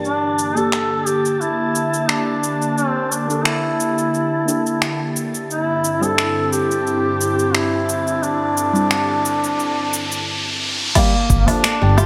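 Bathed in a long, wet plate reverb with a bright 1980s-style digital sheen, this meditative, earthy organic downtempo excerpt puts a distant, roomy duduk with vibrato and scooped notes up front, over soft, dark chord stabs with phaser and delay, an airy, breathy pad with sidechain pumping and a filter sweep, and a mellow, wind-like noise texture in the background. A lightly swung deep house kit of metallic hi-hats, finger snaps, cabasa, woodblock and crash carries an overdriven, gated-reverb edge, and an electronic riser runs from 8.1 to 11.0 seconds. At 11.0 seconds a fingerpicked flamenco guitar with audible finger squeak enters with a punchy electronic kick, soon joined by a smooth sawtooth-and-square synth bass and a snappy, close cajon touch in the background.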